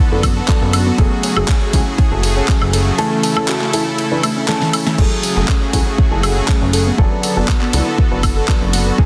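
A lush detuned supersaw pad holding sidechain-pumped chords and a soft round pluck carrying chorused arpeggios in the background open this dreamy, expansive progressive house excerpt in F# minor at 120 BPM. They are joined by a dark, intimate baby grand piano playing delayed stabs and a funky plucky analog bass, then by a punchy, up-front electronic kick and a layered pop drum kit with a fat snare, handclaps and a drum fill at 4.5 seconds, all over a Bm7/F#, F#madd9 and A progression in a dense, heavily limited master.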